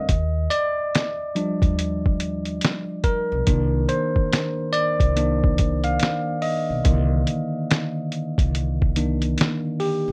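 A bell-like tine electric piano, bright and clean, sits up front and carries this short lo-fi hip hop excerpt in C minor, moving from Ebmaj9 to Cm9 at 3.5 seconds over a swung 71 BPM groove. A compressed, pitched-down sampler-style drum kit with a thumpy kick, fat snare, hi-hat and finger snaps sits forward and muffled, while a woody, dark pizzicato upright bass with gut strings holds down the low end. Light reverb softens the melancholic, reflective mood, and the tuning sits slightly sharp at A4 = 444 Hz.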